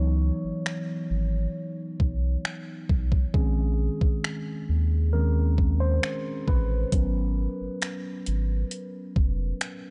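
Late-night and longing, this short cut from a contemporary R&B piece moves at a slow 67 BPM in a straight 4/4, with a mellow tine electric piano carrying the lead through a phaser over minor eleventh chords on Dbm11, Bbm11 and Abm11. A round, deep analog bass with a fast attack and sustained, wave-folded tone sits up front, while an electronic drum kit enters at 0.7 seconds with finger snaps, metallic hi-hats and a knocking kick. The production is dark and dry, with little reverb and a soft, rolled-off top end.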